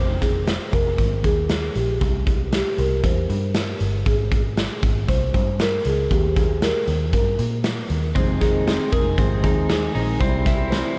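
Soaked in a huge ambient reverb with a cassette-tape haze, this breezy, nostalgic snippet of jangly indie pop moves at 117 BPM over Fm7, C5, Ab and Eb5 chords. Soft-mallet marimba carries a woody, mellow melody through a diffuse ambient delay, backed by a dark, foam-muted picked electric bass and an up-front, gritty garage drum kit with a boomy kick and a rolled-off top. A clean, compressed twelve-string electric guitar flickers in briefly at the start and returns with arpeggios at 8.2 seconds, joined there by a full-bodied, fingerpicked jumbo steel-string acoustic guitar.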